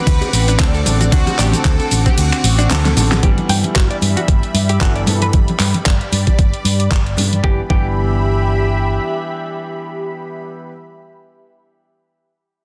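An overdriven, knocking electronic kick sits up front in this feel-good, groovy nu-disco excerpt at 114 BPM in G major, with a swung sixteenth-note feel. It is layered with a produced pop drum kit carrying a fat snare, warm hats, ride, shaker, finger snaps and handclaps, while very quiet, band-limited cabasa, bongos and congas sit beneath. The kick drops out at 2.2 seconds, and a drum fill arrives at 2.7 seconds, leading into the harmony's move from D7 to G6 at 3.2 seconds. A rich, bowed studio violin section carries the melody with vibrato until 3.0 seconds, alongside a clear, open baby grand piano with long sustain and a thick, detuned sawtooth pad that pumps against the kick through chorus and phaser. A dark, round hollow-body electric bass holds the low end up front, while a clean, picked electric guitar riff sits in the background with lush chorus, delay and vintage 12-bit sampler grit. 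The mix has light reverb and a dense, heavily limited modern master.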